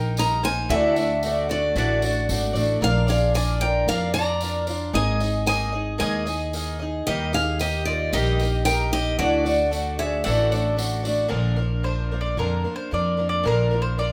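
Lightly reverberant, this nostalgic, hopeful acoustic folk fragment sets a boxy picked steel-string guitar melody over a shimmering, octave-doubled twelve-string up front, a woody pizzicato upright bass, a bright double-strung mandolin second line and a distant, jingly tambourine, until the guitar melody stops at 10.7 seconds and the mandolin takes a short solo from 11.3 seconds.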